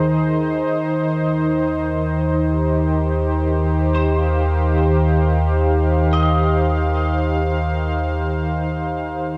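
A detuned sawtooth analog pad sits up front in this luminous, serene ambient piece, holding soft-attack sustained chords bathed in chorus and tremolo that move from Ab/Eb to Eb6 in Eb major. Beneath it, a round sine sub bass rests deep on Eb2, mellow and sustained, anchoring the slow 55 BPM pulse in a straight 4/4. From 3.9 to 7.5 seconds a clean, picked electric guitar drifts in the background with compressed arpeggios high in its register, colored by ensemble chorus and tape echo. The whole fragment, tuned to A4 = 445 Hz, sits in a dark, warm production washed in a wet concert hall reverb, and it begins fading out at 6.5 seconds as it is cut from a longer piece.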